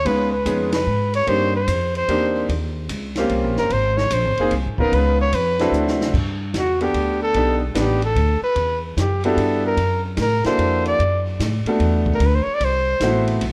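A close-miked trumpet with light vibrato leads this playful small-group swing and bop excerpt in 3/4 at 148 BPM, moving into G major at 6.1 seconds, where a drum fill hands off to its solo. A woody, growly pizzicato upright bass sits up front beside it, while a clear, intimate baby grand piano with audible action noise comps through rich chords, and an open jazz kit with dark cymbals and a boomy kick swings in a small room. Light reverb and the worn, warbling pitch drift of old cassette tape color the whole sound.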